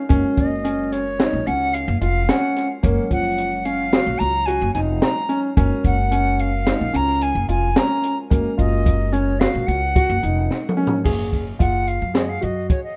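Progressive instrumental band music in 5/4 at 110 BPM, this bright, driving passage in F# major is cut from a longer piece and has the feel of a rough home demo caught in a small room. A silver concert flute carries the melody with an airy, straight tone and crisp attack, touched by digital delay. Beneath it, a warm concert grand piano plays arpeggios with intimate, natural character, deep bass and audible action noise, also sent through delay. A clean tine electric piano sits in the background through its built-in speakers, while a woody pizzicato upright bass on steel strings and an open jazz kit, with its dark, rolled-off top, high-tuned snare and boomy kick, sit up front. Over an F#maj7 harmony the drums play a fill from 10.5 to 11.1 seconds, where the electric piano stops, the chord shifts to F#sus2 and the flute takes a short solo to the close at 13.0 seconds.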